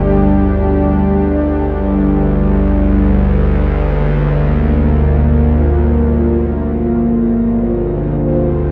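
Dark ambient drone in free time and G minor, this cavernous, ominous passage is cut from a longer piece and rests on a single Gm7 chord throughout its 8.7 seconds. Up front, a bowed-like drone holds the low end between G1 and D2, its string-like, tense sawtooth tone thickened by detuned unison voices, a noise layer, vibrato and its own built-in reverb. Alongside it, a dark analog pad sustains full-bodied chords from G3 to C5, slowly evolving with a sub octave beneath, chorus and a shimmer reverb. Buried far beneath both, a bronze singing bowl struck with a felt mallet adds a barely audible, metallic ring with slow beating. The whole recording sits in a huge, wet ambient space with an 8.1-second decay and carries the warbling pitch drift of worn old cassette tape.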